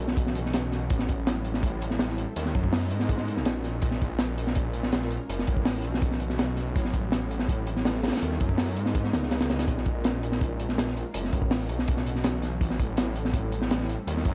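Drum and bass with a jungle edge, this brief excerpt feels nostalgic and raw, built from a crunchy breakbeat kit of hi-hat, punchy kick and high-tuned snare that sounds acoustic, dark and gritty, with a small-room character and a rolled-off top. Underneath, a thick, menacing detuned saw bass beats against itself, its fast attack and sustained notes sitting up front beside the drums. The dry hardware recording carries transformer saturation and a cassette-tape grit, with a touch of studio reverb.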